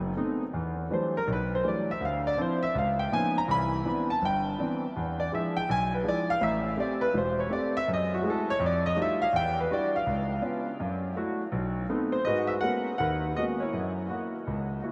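A dreamy haze of long, lingering reverb surrounds this short cut from a longer solo jazz performance, with the room's tail hanging for seconds after each chord. At the center sits a concert grand piano, placed up front with a natural, deep-bottomed tone, its sound shimmering through analog chorus and trailing off into a diffuse ambient delay. The mood is late-night and moody, carried by a swung 4/4 feel and a slightly lowered tuning that gives the instrument a subtly darkened cast. The piano ranges from the low bass register up into its upper-middle reaches, moving through rich extended harmonies such as Em11, Dm9, C#13, Cmaj9 and a recurring altered B7b9. After its featured solo passage ends at 12.3 seconds, the harmony shifts to G#m11 and then F#7 as the fragment closes at 14.9 seconds.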